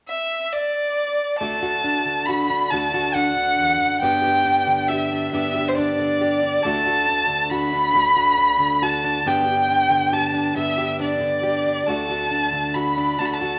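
A clear, focused violin carries a hopeful, pastoral melody with vibrato from the opening moment, and at 1.4 seconds a warm fingerpicked plugged-in steel-string acoustic guitar joins beneath it, shifting between D and G in a slow 6/8 at 46 BPM in D major, all wrapped in a wet large-studio reverb and vinyl crackle in this short acoustic folk excerpt.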